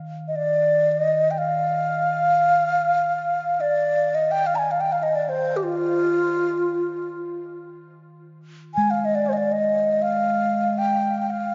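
This is meditative world music in free time, haunting and unhurried, cut from a longer piece. A bronze singing bowl struck with a felt mallet opens with a dark, metallic ring and slow beating, sitting softly in the background. A breathy alto flute with a wooden head enters at 0.3 s and carries the melody, up front with expressive vibrato and tongued notes, its line trailed by a delay. The bowl stops at 0.8 s, leaving the flute alone until the bowl's mellow ring returns at 8.8 s beneath it. A wet church reverb with a long tail surrounds the performance, and the sound has a rounded, softened top end.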